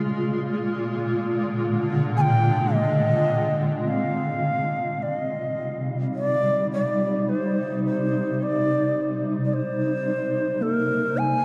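A slow, straight 4/4 pulse at 53 BPM carries this serene, reflective ambient piece in C minor, cut from a longer work. A granular cloud pad opens alone with sustained chords, its blurred, detuned, evolving texture swelling in through a slow attack and trailing off on a long release, its own built-in reverb keeping it up front as the harmony moves from Bb7 to Cm. At 2.2 s an end-blown shakuhachi enters with an airy, bamboo-toned melody, played with a straight tone and soft attack, expressive and up front, its phrases repeated by tape echo. From 3.9 s a barky tine electric piano adds very quiet arpeggios through a combo amp, its clean, warm tone pulsing with medium tremolo, while a filter sweep moves across the pad. The whole is bathed in a huge, wet ambient reverb with a nine-second tail and the soft grain of cassette tape.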